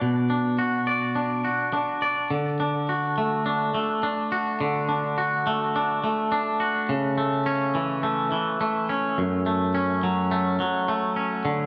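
A twangy, clean electric guitar plays alone and up front throughout this euphoric, cinematic rock passage, cut from a longer piece, moving in a straight 4/4 feel through Bm, D, A/C# and F#m. Its fingered, compressed tone carries an analog delay, and the whole sits in a wet concert hall reverb with a 2.2-second decay. After a brief opening on Bm, the music shifts into a longer stretch at 2.3 seconds that runs to the end at 11.7 seconds.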